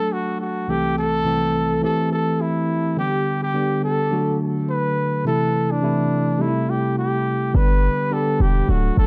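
A dark, warm production with a moderate studio reverb frames this breezy, joyful afrobeats fragment, cut from a longer piece, moving at 105 BPM in 4/4 with a light 16th-note swing in G major, tuned to A4 = 439 Hz. A mellow pop-style trumpet carries the solo melody between D4 and B4, punchy yet smooth on top, with light vibrato and scooped notes, and its sound is dressed in plate reverb and tape echo. Underneath, a clean tine electric piano plays the accompaniment from start to finish, heard as if through built-in speakers and set in its own plate reverb, both it and the trumpet sitting up front. The harmony cycles twice through D, Am/C, C6 and G. At 7.5 s a deep, boomy 808-style bass arrives up front, a sine tone with a noise layer, fast attack and decaying notes, adding low weight until the close at 9.1 s.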